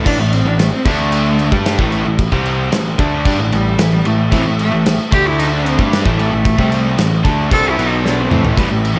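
A rich, bowed cello carries the melody with vibrato and a focused, smooth top across this brooding, angsty nine-second cut of quiet-loud alternative rock in A minor at 113 BPM. Beneath it, two bright overdriven electric guitars with slapback echo sit in the background alongside a very quiet, sludgy distorted guitar, all playing riffs over chords moving between A5, D5, Am and B5, while a growling, overdriven picked bass anchors the low end. A loose, up-front indie drum kit with dark cymbals and a punchy kick pumps in its room, adding a fill from 8.0 to 8.6 seconds, all set in a lush hall reverb for a big arena sound.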